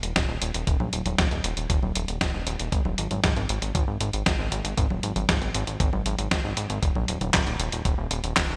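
A chorused synth bass and a dusty soul sampler-style drum kit open this playful, danceable italo disco excerpt together, with the congas, handclaps, hi-hat and medium-tuned snare of the kit sitting gritty and up front, and an electronic thumpy kick joining at 0.2 seconds. The glossy, nasal bass is built from pulse and sawtooth waves with pulse-width modulation and a filter pluck, saturated and carrying delay as it spans Eb1 to Bb1. Light reverb and a bright 1980s-style digital sheen frame the compressed, tape-toned drums, which sound re-recorded in a large room.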